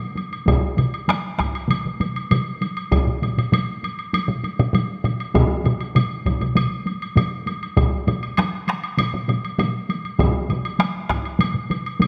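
A taiko ensemble struck with heavy sticks opens at 0.2 s alongside a woody woodblock, the drums sounding in a small room and the woodblock in a live room. This short, powerful and ceremonial passage of Japanese traditional drumming, cut from a longer piece, moves in a straight 4/4. At 0.5 s a solo taiko part played with hard sticks joins and sits up front, its large-room sound carrying a distant quality. A second ensemble part with hard sticks, close and dry, enters at the same moment. A third ensemble part, heavy-sticked and close, plays from 2.9 s to 9.7 s, thickening the layered acoustic drumming. Detailed close microphones capture the strokes, set in a moderate scoring-stage reverb.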